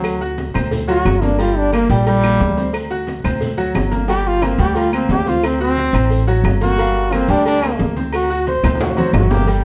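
Heard from further back in a wet studio room, this driving, danceable salsa excerpt in G minor at 178 BPM puts an up-front, brilliant, punchy trombone solo with vibrato over a bright, short-sustained grand piano and a thumpy, woody pizzicato upright bass moving between D7 and Gm, while ringing agogo bells and timbales, close, dry claves, thin-skinned, low-tuned congas and round cowbell and bongos sit in the background, grainy maracas sound distant, and a drum fill arrives at 8.6 seconds.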